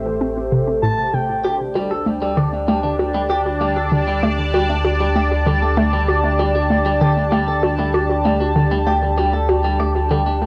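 A bright, resonant sawtooth pad sustains Am7 and Dsus4 chords up front in this hypnotic, cosmic stretch of sequencer-driven ambient space music at 97 BPM, joined by a hollow, bouncy square-wave pluck riff with analog delay, a mellow, pulse-width-modulated analog drone bass with transformer saturation, a brief smooth synth lead melody with vibrato at 0.8 seconds, and twangy, clean electric guitar arpeggios from 1.4 seconds, while a filter sweep moves through the synth arpeggio sound and the home cassette recording sits in a wet studio reverb.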